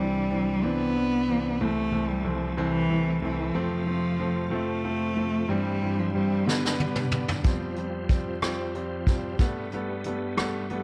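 Six-eight pop ballad in C major at 62 BPM, romantic and swaying, with a rich, nasal bowed cello carrying the melody with vibrato, soft attacks, portamento and a touch of tape echo until 7.2 seconds, over clear concert grand piano accompaniment with deep bass and short sustain. A bright, shouting tonewheel organ holds sustained chords through light overdrive, chorus vibrato and a fast rotary speaker, while a vintage brush drum kit, punchy in the kick and rolled off on top, enters at 6.5 seconds with a fill. The chords move from Cadd9 through Am/C, F and C/G to G, Fsus2 and Gadd9, all set in a dark production with moderate echo chamber reverb, in a passage cut from a longer piece.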